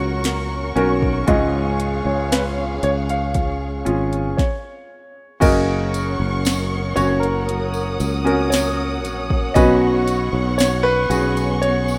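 Heard through a lush hall reverb in a rough home-demo mix, this heartfelt pop ballad fragment pairs a polished baby grand piano melody with a clear, woody upright piano accompaniment, while a distant bowed string section holds expressive chords with vibrato and a very quiet, full-bodied fingerpicked steel-string acoustic guitar plays arpeggios beneath. A growly, punchy fretless electric bass sits up front against a smooth, electronic R&B drum kit with a soft kick, sharp snare and overdriven grit. After a brief stop from 4.4 seconds, a jingly tambourine joins far in the background at 5.4 seconds as the emotional second section begins.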